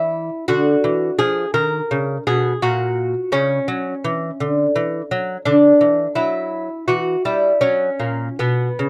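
This classical, baroque-style dance for solo lute has an introspective, flowing mood, played with a rubato feel and cut as a short fragment from a longer piece. The fingerpicked lute carries the whole passage from 0.0 to 8.9 seconds, its bright, delicate gut strings sounding up front, with some octave-doubled courses across a range from A#2 to A#4. A close, dry 1970s-style studio sound with light reverb keeps the instrument intimate as the harmony drifts from Dadd9 through C#7, F#/A# and Emadd9 before settling briefly on F#.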